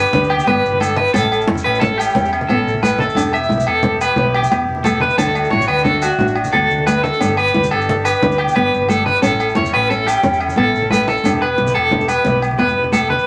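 Danceable and warm, this short cut from a longer highlife guitar band piece rolls along in a straight 12/8 over a cycling G, A, Em and D progression. Up front, a twangy, slightly broken-up electric guitar plays picked arpeggios with tremolo, while a bright nylon-string guitar fingerpicks a classical-style accompaniment on fresh strings, its finger squeaks audible. Beneath them a round, dark hollow-body short-scale bass anchors the low end, and a reedy, sweet accordion with light tremolo tuning holds full, close-miked chords in the background. The percussion pairs ringing agogo bells with a compressed, saturated edge, close and dry medium-tuned congas, and grainy, mellow maracas tucked far back. Moderate studio reverb and a layer of vinyl crackle give the recording an old-record character.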